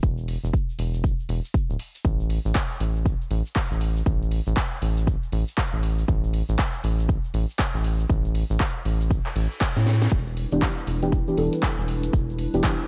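A rubbery, hollow square-wave bass bounces up front with tube saturation and sidechain pumping, anchoring this moody, late-night deep house excerpt alongside a punchy electronic kick, a grainy egg shaker and an overdriven house kit of handclaps, hi-hat and cracking snare heard in a large room. A reverse cymbal in the background and a drum fill lead into an Em7 chord at 10.1 seconds. Just after that, a warbling, nostalgic tape-like pad with 12-bit sampler grit and a soft, dark chord stab treated with chorus, phaser and analog delay join in, all set in a cassette-tinged ambience.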